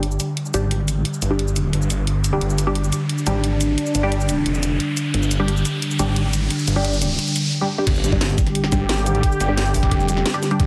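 A tense, futuristic slice of dark technical drum and bass at 176 BPM opens on a bright, resonant pad sweeping through a filter alongside muted dub chord stabs treated with phaser, chorus and tape echo, while a growling, detuned saw bass sits up front over a drum kit with a cracking snare, hi-hat, cabasa and crash. A riser builds from 0.1 seconds through the opening build-up, and at 7.9 seconds the drop lands with an electronic impact and a knocking, layered kick drum. The dense, heavily limited mix sits in a moderate digital room reverb, and the excerpt is cut from a longer piece.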